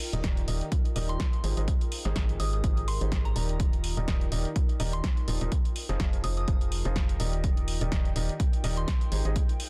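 A punchy analog drum machine's hi-hat and snare open this joyful, uplifting piano house excerpt at 125 BPM in Eb major, alongside a warbling, nostalgic lo-fi pad that sits in the background with chorus, reverb and sidechain pumping. A clear, woody upright piano with audible action noise plays a filtered, delayed riff, while a hollow, organ-like FM bass and an up-front electronic kick drive the swung groove through Ebmaj7, Abmaj7 and Fm7 chords. From 1.1 seconds a soft, pure synth bell adds a mellow melody high in the background, coloured by chorus, phaser and delay, all within a dense, heavily limited modern master.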